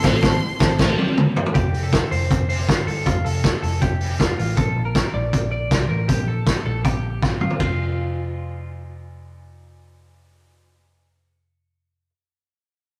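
At 158 BPM in a straight 4/4, this bright, nostalgic jangly indie pop piece in F major opens on a band accent, with a clear, bowed violin sounding a brief background line and a woody, shimmering twelve-string acoustic guitar picking under it for about the first second, while the gritty vintage drum kit, with its tight kick and dark cymbals, pushes up front and a fill leads into the F chord at 1.5 seconds. A bright, twangy twelve-string electric guitar picks arpeggios through spring reverb until 8.7 seconds, and a round, foam-muted electric bass holds the low end to 12.1 seconds, after another drum fill at 7.2 seconds leaves the chords behind. The whole sounds like a rough rehearsal-room recording in a moderate stone room, with warm saturation.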